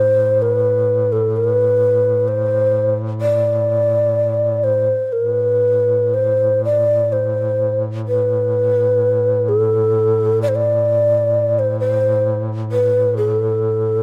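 A hollow, airy shakuhachi sits up front and carries a longing, mournful melody between A4 and D5 with vibrato and a crisp, chiffy attack. Beneath it, a duduk holds a low A2 drone with its own vibrato in this unhurried, rubato Caucasian folk passage in A minor and 3/4 at 64 BPM, closely recorded in light reverb and cut from a longer piece.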